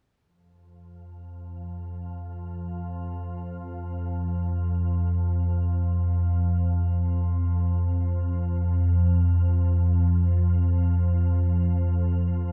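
Ominous and unsettling, this ambient excerpt in free time centres on a calm, organ-like drone of detuned sine tones in unison, spanning F2 to F3, which fades in slowly at 1.1 seconds and sustains up front with ensemble chorus and built-in reverb until 12.5 seconds, all suspended in a wet cathedral reverb with a 5.7-second decay that evokes a vast, echoing space.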